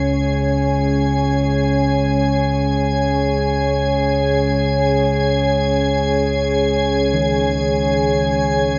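Drifting in free time, this ominous dark ambient drone sets a nasal, detuned analog pad up front in sustained chords over a deep rumbling drone, with a crystalline, icy glass pad shimmering above through chorus and cavernous cathedral reverb, until bronze gamelan-type bossed gongs enter in the background at 7.1 seconds with beating metallic arpeggios on D#3.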